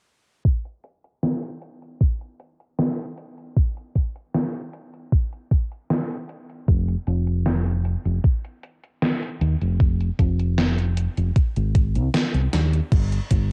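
A hazy, woozy vaporwave groove opens at 0.5 seconds on a thumpy, tape-warm electronic kick drum and a gated 80s digital drum machine, its crash cymbal, hi-hat and snare drenched in gated reverb, overdriven and re-recorded in a small room. Both drum parts sit up front with a sampler-style, cassette-worn character, while a filter sweep runs across the whole passage in straight 4/4. At 6.7 seconds a fingered electric bass joins, dark, round and punchy, sitting low and forward in the mix. A drum fill arrives at 12.5 seconds just before the passage ends. The whole piece carries the muffled, lo-fi sheen of a home cassette recording with light reverb, and this clip is cut from a longer work.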